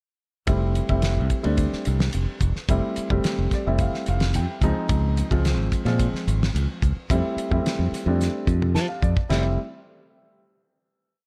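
Electric jazz fusion with a bright, slick mood in a straight 4/4, carried by a baby grand piano playing rootless voicings in pushed chord rhythms, a growly, direct fingered electric bass with a syncopated riff, and a damped 70s drum kit with a fat snare, tight kick and fusion ride groove, all up front. The harmony moves from Fmaj9 to Dbmaj9 at 4.6 seconds and back, with piano fills at 3.2 and 8.5 seconds and a drum fill at 8.2 seconds leading into a final chord. The production is dark and warm, with light reverb, small room ambience and some lossy compression artefacts.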